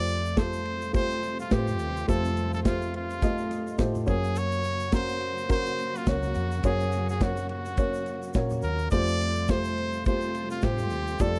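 Hopeful and warm, this piano-driven pop excerpt moves at 105 BPM in 4/4 with a light 16th-note swing, cut from a longer piece. A brilliant, up-front trumpet carries the solo melody in a pop style, set over a dark upright piano whose woody, mellow chords have a short sustain. Behind them, a lush bowed string section holds sustained chords with expressive vibrato and a smooth top, sitting well in the background. A foam-muted fingered electric bass gives a round, punchy low end, while an acoustic drum kit with a tight kick, medium-tuned snare, ride cymbal and toms enters at 0.1 seconds, its top rolled off in a small room. A grainy, bright tube shaker adds faint texture, and the harmony moves from Fadd9 to Gb at 4.1 seconds before returning to Fadd9 at 8.9 seconds, all captured in a dry, close 1970s-style studio sound.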